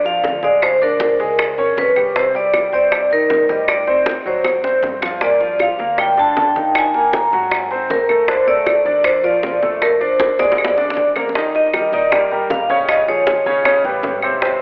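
Driven by hard-handed congas, round low-tuned bongos and woody, saturated claves at a brisk 157 BPM in straight 4/4, this lively, danceable Afro-Cuban jazz excerpt in Bb major puts a ringing, metallic vibraphone with medium motor vibrato and diffuse ambient delay up front over a deep-voiced concert grand piano treated with lush chorus and a pizzicato upright bass with steel strings tucked in the background, with drum fills at 4.1 and 10.4 seconds, a shift to new harmony at 11.4 seconds, and the whole dreamy mix soaked in huge reverb with a cassette-tape, telephone-like colour.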